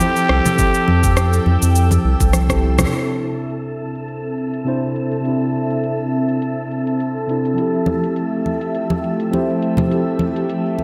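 A muted trumpet, nasal and raspy with light vibrato, opens this smooth sunset chillout piece at 103 BPM. It sits over a mellow tine electric piano with sampler grit and delay, a breathy pad shimmering with chorus and phaser, a smooth R&B kit of cabasa, hi-hat and rim click with filtered highs, and bright, dry congas, while a round, deep analog bass, a knocking electronic kick and a faint wind-like noise texture join moments later. After a drum fill at 2.3 seconds and a band accent, the trumpet, bass and kick drop away, leaving piano, pad, kit and texture on C6 before returning to Fmaj9. The congas return at 7.9 seconds, all within lush hall reverb and a glossy 1980s-style digital sheen.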